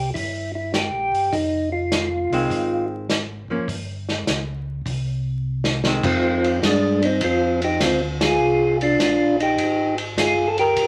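A percussive tonewheel organ carries the up-front melody through a slow rotary speaker, with a round third-harmonic bite, over a mellow, key-clicking organ bass line in this bluesy, soulful soul jazz organ trio excerpt in F dorian at 102 BPM with a swung feel, while a vintage drum kit with dark cymbals and a boomy kick pumps in a small room and fills just before the second phrase, a clean, hollow-body archtop guitar adds picked accompaniment from 2.3 to 6.6 seconds, and studio reverb and vinyl crackle give the whole a dusty, aged sheen.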